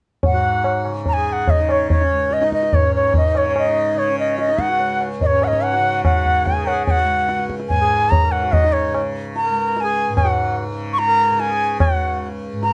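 A buzzing, shimmering tanpura drone and a high-tuned, ringing tabla open this devotional, radiant Hindustani classical passage in raga Durga at 145 BPM, joined at 0.3 s by an airy bamboo bansuri melody with vibrato and tongued notes up front, while a nasal, breathing hand-pumped harmonium plays a dry second line beneath, all captured with close, detailed microphones in light reverb.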